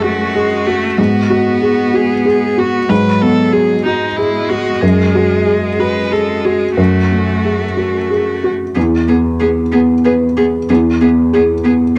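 A felt-muted upright piano, boxy and up front with audible action noise, opens this intimate, hopeful neoclassical excerpt alongside a clear viola and a rich, smooth-topped cello, each a single focused bowed player with vibrato. In a rubato 6/8 lilt, the strings sit beneath the mellow, dark piano as the harmony moves from F#madd9 through G#m7 and back to F#madd9 before settling on E at 8.8 seconds. All three parts carry a cassette tape coloring, while light reverb and small room ambience give the home recording a personal feel.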